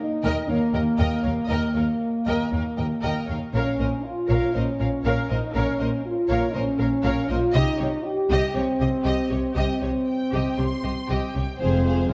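Dramatic and heroic, this short cut from an epic orchestral film score sets an up-front, roomy French horn section on sustained chords over a lush bowed string body: a distant studio violin melody in the background, a symphonic second violin line, viola accompaniment, a focused cello bass and distant double basses, with a tight trombone section joining only at 11.6 seconds, all heard through a scoring-stage reverb and the worn, warbly pitch drift of old cassette tape.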